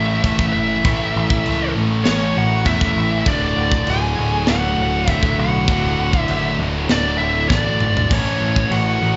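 A dark, epic heavy metal fragment opens with a dark-toned, high-gain lead guitar melody up front, shadowed by a bright second lead line lower down and underpinned by heavy and scooped high-gain rhythm guitars riffing in the background, both lead and rhythm guitars carrying slapback echo, alongside a very quiet double-tracked fuzz guitar riff and a growling, punchy overdriven picked bass, while a tight, gritty metal drum kit with crash and splash cymbals, kick, snare and toms joins at 0.2 seconds and plays a fill from 7.5 to 8.1 seconds, all heard as a live club gig through the venue's PA with a dulled top end.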